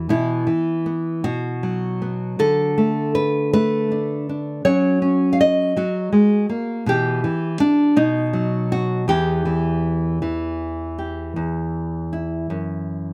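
Melancholic and reflective, this short folk fragment, cut from a longer piece, features a solo nylon-string guitar in E minor. It moves in a rubato 6/8 at about 53 beats per minute, counted in dotted quarters. The fingerpicked, classical-style playing spans from E2 up to F5, and the guitar sits up front with a warm, acoustic tone in light reverb. Harmonies pass through E5/B, B5, D5 and F#, settling onto Em/B, B and Em before the chords fall away at 11.4 seconds. The closing stretch from 11.4 to 13.1 seconds shifts into a new section with the guitar still alone.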